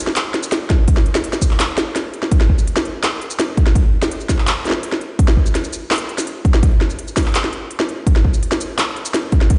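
Drum and bass with a dark, cinematic half-time feel, cut from a longer piece, where an up-front industrial drum kit of clanging snare, crisp hats, handclaps and shaker enters at 0.1 seconds, joined by a heavy electronic kick at 0.7 seconds, both tape-warm and re-recorded in a large room, with a brief break at 2.0 seconds before the drop returns, all heard through a big sound system in a bare stone room with light reverb and dulled top end.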